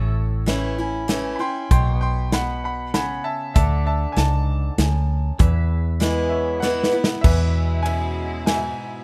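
Honky-tonk and classic country in a sunny, down-home 3/4 at 98 BPM, with a bright, woody upright piano carrying the melody as a solo through the first 7.2 seconds over a boxy, picked parlour acoustic guitar with audible finger squeak and a twangy pedal steel sitting in the background. A dark, foam-muted electric bass and a punchy, up-front country drum kit drive the groove, with a drum fill from 6.6 to 7.2 seconds leading into a new section where an earthy chamber string section enters with sustained chords. The rough home demo mix is dry, with little reverb, and the fragment is cut from a longer piece.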